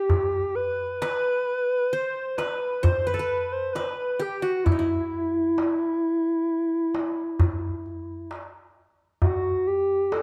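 Close, detailed microphones and a light reverb give this short excerpt from a longer Arabic maqam ensemble piece an intimate, clear sound. Its mood is longing and soulful, set in 10/8 metre with a straight feel. Up front, a reedy, woody FM lead carries the melody with a soft attack and sustained, vibrato-laden notes, its tone thickened by chorus and a noise layer. Beneath it, an acoustic qanun plays a second line, its plectrum-plucked triple strings sounding bright-edged before it falls away at 8.3 seconds. A crisp, deep metal-shell darbuka, played with soft hands and carrying the resonance of a large room, drives the percussion from the start. At 9.2 seconds the music moves into a new section, where the lead and darbuka carry on together to the close.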